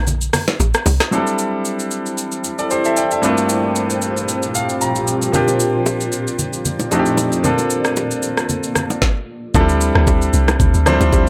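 Light reverb and a digital ambience frame this short, deep and hypnotic amapiano passage at 114 BPM, with a 16th-note swing. It opens on a brief break and drop over A minor. A round, dark log drum bass with a fast, percussive attack sounds beneath an electronic R&B kit of knocking kick, woody snare, rim click, shaker and metallic hats, the kit carrying a small-room character and sitting up front. Close, dry congas and bongos ring alongside. A brilliant concert grand piano enters at 1.1 seconds, intimate and polished with audible action noise and long sustain, moving through D9sus4, Gm11, C9sus4, F13 and Bbmaj7 and taking a fill along the way. A cloudy granular pad, blurred and full-bodied with its own reverb and sidechain pumping, slowly settles in behind the piano, while the hand drums return at 5.3 seconds and the log drum bass comes back at 9.5 seconds on D9sus4 as the passage is cut off.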